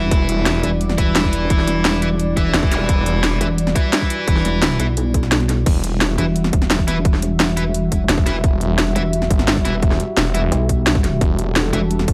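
Opening on a moody analog pad of sustained chords with sidechain pumping, bright overdriven guitar stabs with digital delay, a heavy pulsing pluck wobble bass and a faint lo-fi tape-like pad that warbles through the first half, this dark, tense technical drum and bass excerpt drives in straight 4/4 as an up-front, growling saw bass with tube saturation snarls beneath an overdriven kit of cracking snare, hi-hat and crash cymbal over a tight electronic kick that drops out briefly just before the second drop at 5.7 seconds, while a very quiet electronic zap appears at 2.7 seconds in a dry, close mix.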